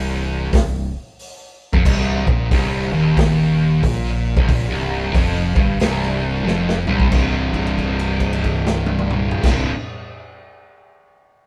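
Hypnotic and heavy, this short cut from a longer stoner and doom metal piece has a swung 4/4 groove, with a double-tracked, compressed fuzz guitar riff sitting up front over an overdriven, round fingered electric bass, both starting at 0.0 seconds. A gritty garage drum kit with a punchy kick, dark cymbals and a pumping small-room sound comes in at 0.5 seconds and plays a fill just before 7.1 seconds, when the harmony shifts from a minor chord to a power chord and a held note rings until 9.4 seconds. The band plays live together in one room, with light reverb.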